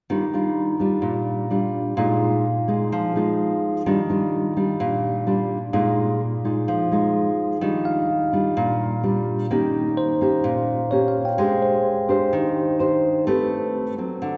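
Breezy and sunny, this short bossa nova fragment is cut from a longer piece and moves in a straight, easy 4/4. A nylon-string guitar carries the accompaniment from start to finish, its dark, classical tone placed up front, thumb-plucked and marked by the occasional finger squeak. At 7.9 seconds a bright, bell-like tine electric piano joins in the upper register, its clean and direct sound sitting lower in the balance before it drops out at 13.5 seconds. The harmony rocks between Ebmaj9 and Bb7sus4 in the opening half, then turns toward Eb7, Abmaj7#11 and a closing Am9 in the second. A wet, church-like reverb with a long tail surrounds the whole performance, giving the intimate duo a spacious, hall-filled air.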